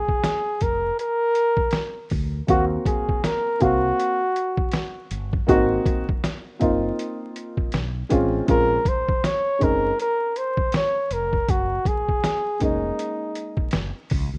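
Swung sixteenth-note hip hop grooves anchor this mellow, cool jazz-hop excerpt, where a gritty, pitched-down sampler-style drum kit with a thumpy kick and overdrive sits up front beside a round fretless electric bass, a breathy solo flugelhorn carries the melody from the first moment, and a dark, woody upright piano with short sustain joins at 2.5 seconds with jazzy extended chords, the whole mix framed by small-room ambience, a rough home-demo feel and vinyl crackle.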